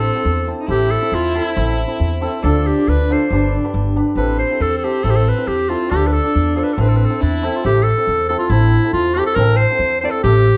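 A bright, up-front clarinet carries a festive yet bittersweet klezmer melody in A minor at 138 BPM in 2/4, doubled by a slapback echo and joined by a clear, earthy violin second line with light vibrato that sits distant and stops at 7.6 seconds, while a shimmering, ringing hammered dulcimer accompaniment and a woody, pizzicato upright bass fill out a dark, lightly reverberant mix as the harmony moves from Am through Dm and G before a new section arrives at 7.7 seconds.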